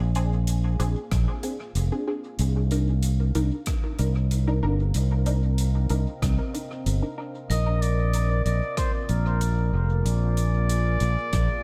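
Hazy and deep, this ambient dub excerpt moves at 94 BPM in a straight 4/4, cut from a longer piece and built on Bb7 and Cm9 chords. A dark, moody pad of detuned sawtooth and sine tones with a sub octave fades in from the start and sits in the background, its slow attack and long release softened by chorus and reverb. A fingered electric bass, direct and amped, sits up front with a warm tone, while a soft-mallet drum kit in a big room ticks out hi-hat and rim clicks through dub echo. A punchy, layered electronic kick enters at 1.1 seconds, and a filtered dub chord stab of sawtooth and pulse waves plucks short, muffled chords through phaser, analog chorus, cassette tape grit and dub echo until 7.4 seconds. At 7.5 seconds a veiled, distant trumpet with a bucket mute takes a solo melody in a classical style, echoed in dub fashion, as a bright, ringing vibraphone with medium hard mallets and slow motor vibrato arpeggiates in the background through tape echo.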